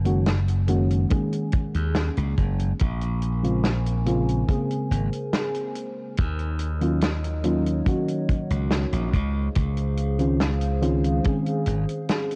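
A glassy, punchy slap bass sits up front in this nostalgic, woozy vaporwave excerpt, which moves at a slow 71 BPM in a straight 4/4 in Db major. Beside it, a mellow FM electric piano carries the accompaniment with a soft, round, fast-attack tone that decays, its warbling vintage character thickened by lush chorus and tape echo. A dry acoustic soul kit supplies hi-hat and a medium-tuned snare with a rolled-off top, and a tight, mid-forward kick enters at 1.1 seconds. From 2.8 seconds a dark, detuned pad built from square and triangle waves holds sustained chords with a slow attack and long release, carrying chorus, built-in reverb and 12-bit sampler grit. The harmony moves from Gb6/9 through Bbm9 and Ebm7 to Dbmaj7, set in a dark cassette-tape production with light reverb and small room ambience.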